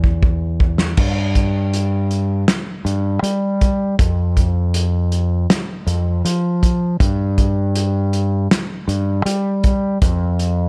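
The recording is dark and close, with little room sound, and both instruments sit up front. This short post-rock excerpt moves at 80 BPM in a straight 4/4 and carries a hopeful, cinematic mood. A loose indie drum kit opens with a fill across the first second, then settles into a groove of kick, snare, hi-hat and crash from 1.0 seconds, its acoustic kit heard in a small room with a medium-tuned snare and a tight kick. A fingered electric bass plays from the start, ranging from E2 to G3 with a growling, overdriven tone that is bright and punchy. Both parts run nearly the whole length, the bass stopping at 10.7 seconds.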